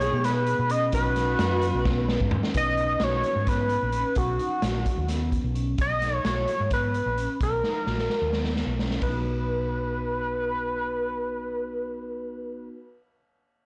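A bold, hollow lead of layered sawtooth and triangle tones with an added fifth sits up front in this driving, intricate progressive instrumental in 7/8, its fast-attack, sustained notes colored by chorus, vibrato and digital delay. A breathy, subtone alto saxophone adds a mellow second line until 2.3 seconds, a worn, slightly out-of-tune tine electric piano, lightly overdriven through a combo amp, accompanies in the background until 5.7 seconds, and a ringing, metallic vibraphone with medium mallets plays arpeggios throughout. A round, amped fretless bass with tube saturation holds the low end, and a raw garage drum kit with a punchy kick, set in a bright stone room, plays fills before stopping at 9.1 seconds, all captured in a blown-out, overdriven recording with light reverb.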